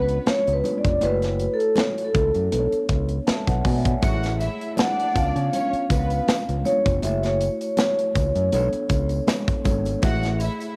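Lush, romantic 1970s-style soul at 80 BPM in 4/4 with a light sixteenth-note swing, cut from a longer piece and carrying the soft haze of a home cassette recording with studio reverb. A soft-mallet vibraphone takes the melody as a solo, its metallic, airy ringing shaded by slow motor vibrato, over a bowed violin section with expressive vibrato and a mellow tine electric piano that adds a fill from 2.9 to 4.0 seconds. Underneath, a bright, punchy fingered bass with transformer saturation and an up-front acoustic drum kit of hi-hat, punchy kick and medium-tuned snare, tape-colored, drive the groove, while distant high-tuned congas and a jingly tambourine entering at 4.0 seconds sit quietly in the background over chords moving through C#7b9, F#m7, Bm9 and A5.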